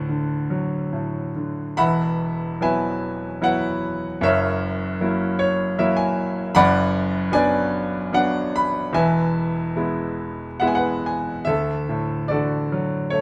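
A bright, up-front grand piano plays alone in this peaceful, tender classical excerpt, a lyrical solo in 3/4 that flows with a rubato feel across a range from E1 to B5. Its brilliant, short-sustained tone sits in light reverb as the harmony moves through D, Esus2, F#7, Bm/F# and E, with piano fills arriving at 5.0 and 10.2 seconds. The opening idea returns at 11.5 seconds, settling back on D.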